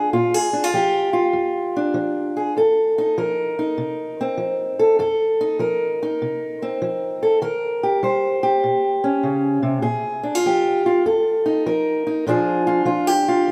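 Swaggering and soulful, this short blues piece moves at 99 BPM in 4/4 with a swung eighth-note feel in Bb major. A lone fingerpicked steel-string acoustic guitar carries everything from 0.0 to 13.5 seconds, ranging from F2 up to C5. Its tone is warm and boxy with a parlour character, and it sits up front in the mix. The chords run through Bb7, F7 and Eb7 before a bare Bb7 and a return to F7, landing on Bb7 at 12.3 seconds as a brief closing section begins. A moderate lush hall reverb with a long tail surrounds the rough home-demo sound of this fragment cut from a longer piece.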